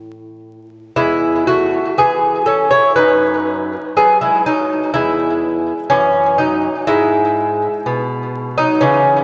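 A bright, delicate fingerpicked lute with doubled nylon strings sits up front and plays alone from 0.0 to 9.2 s in this flowing, dance-like baroque-style classical piece, moving with a free rubato feel, its delayed notes soaked in a lush hall reverb with vinyl crackle and a dreamy, softened top end.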